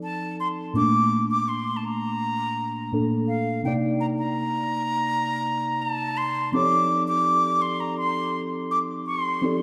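Moody and longing, this R&B excerpt at 83 BPM in a straight 4/4 sets a breathy, straight-toned silver concert flute carrying the melody with analog delay over muted, felt-like synth keys whose dark, intimate chorus-touched chords move from F7 through Bbmaj7 and Cm9 to F13. Both parts sit up front and play throughout the 9.6 seconds, the close-miked flute tongued and expressive, the keys soft with a fast attack and decaying tone. A lush hall reverb with a 2.7-second tail soaks the mix in a dreamy haze.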